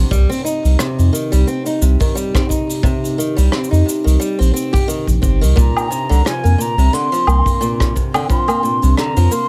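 A warbly, detuned tape-like pad holds dark sustained chords while an old ladder-braced acoustic guitar, woody and boxy with old strings, plays fingerpicked arpeggios through delay and plate reverb, opening a delicate, autumnal folktronica excerpt in C minor at 88 BPM with a lightly swung 16th feel. A deep, round sine sub bass sits up front beneath a punchy kick and a vintage brush kit of cabasa, hi-hat, rim click and woodblock, recorded in a small pumping room with a rolled-off top. At 5.6 seconds the harmony moves from Cm to Bbadd9/C and a mellow, hollow silver concert flute enters high with vibrato, roughened by 12-bit sampler grit and trailed by delay and plate reverb.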